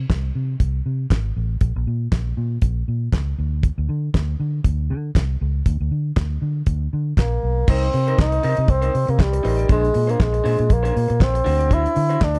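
A damped 70s drum kit sits up front in this driving, danceable disco excerpt, its fat snare, tight kick, handclaps, hi-hat and crash sounding dry with a rolled-off top, while a punchy, round, foam-muted electric bass holds down the low end from the very start. A mellow, classical-style bassoon takes the solo melody at 7.2 seconds, and just after, at 7.7 seconds, a bright, slightly broken-up electric guitar through a small old amp adds lo-fi, compressed accompaniment low in the mix as the harmony moves through Cm7, Bb9 and D7. The production is dark and warm, set in a small room ambience with a gentle swing on the sixteenths.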